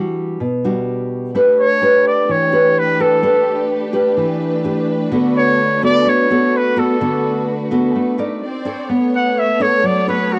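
A jazz-style trumpet carries the melody from 1.6 seconds, its soft attack and light vibrato sounding distant and roomy even while it sits up front. This sunny, breezy bossa nova in D major moves at 127 BPM in a straight 4/4. A full-bodied, fingerpicked classical nylon-string guitar opens the accompaniment at 0.0 seconds, and a lush, bowed studio string section enters at 1.3 seconds with intimate sul tasto chords and a smooth top, moving through Em9, A9sus4, D6, Cm9 and Bm9. Cassette tape colours each part, and a small room adds moderate reverb to this home recording cut from a longer piece.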